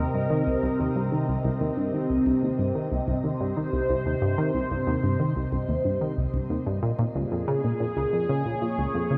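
A straight 4/4 pulse at 92 BPM drives this hypnotic, mysterious piece of ambient, sequencer-driven space music, where a tight, detuned sawtooth sequenced synth with a plucky filtered bite, chorus and analog delay runs its riff from C2 to Eb3 beneath a swirling, slow-blooming phased analog pad whose sustained chords, bathed in phaser, chorus and shimmer reverb, move from Cm7 to Bbm7 at 6.8 seconds, both parts sitting up front in a lush, wet hall with a 2.7-second decay, tuned slightly low to A4 = 437 Hz and cut from a longer piece.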